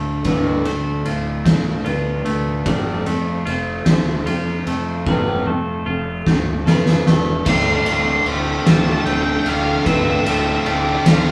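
An excerpt of brooding, cinematic post-rock in 6/8 opens on a morphing, phaser-tinged wavetable pad, a lo-fi guitar through a small old amp picking arpeggios in the background, a clean twangy guitar arpeggiating beneath it, an overdriven semi-hollow guitar riff and a growly fuzz bass, with an oversized low-tuned drum kit joining up front at 0.2 s with a fat snare and punchy kick. The opening builds toward a drum fill, then a second distorted guitar adds a riff in the background from 7.4 s, while at 7.5 s the twangy guitar stops and a dark octave-fuzz lead guitar takes up a high melody. The band sounds as if playing together in a small room washed in wet reverb, with the drums saturated and gritty under a rolled-off top.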